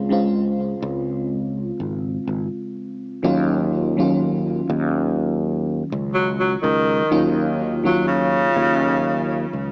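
A tenor saxophone carries the melody, entering at 6.1 seconds with a vibrato-laden, pop-style solo that sits distant and roomy yet still up front, trailed by tape echo. Beneath it, a mellow FM electric piano holds the accompaniment throughout, its soft, round, full-bodied tone carrying a dark edge, a faint noise layer, and decaying notes bathed in lush chorus and analog delay. A fretless electric bass growls along underneath, direct and saturated with tube grit. The harmony moves from Dbmaj7 to Ebm9 in this slow, straight-feel vaporwave fragment, cut from a longer piece and steeped in melancholic, nostalgic longing. A lush hall reverb and a small-speaker sound give the whole a hazy, faded warmth before the fade-out begins at 8.4 seconds.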